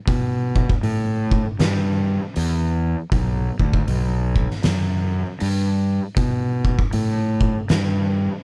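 A growly, overdriven fuzz bass and an oversized, low-tuned, gritty drum kit with a punchy kick, fat snare and hi-hat enter together at 0.1 s, both up front in this heavy, hypnotic stoner and doom metal excerpt at 79 BPM in B minor, swinging its eighths over a dry sound until the drums stop at 7.9 s and the bass rings on to 8.3 s.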